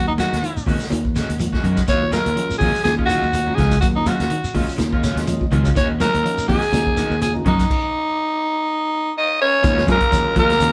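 A raspy, up-front alto saxophone carries the melody over picked guitar arpeggios and a round, punchy fingered bass in this driving, hypnotic afrobeat excerpt in Eb minor at 124 BPM, with a lightly swung sixteenth-note feel. A second slightly broken-up, twangy guitar adds tremolo stabs as a vintage kit with a punchy kick comes in alongside grainy shekere and high-tuned congas, while a barky, overdriven tine electric piano enters at 2.4 s and plays a fill at 4.8 s. At 9.2 s a growling trombone and a forceful baritone saxophone add a second line in the background, all played live in one room with moderate reverb.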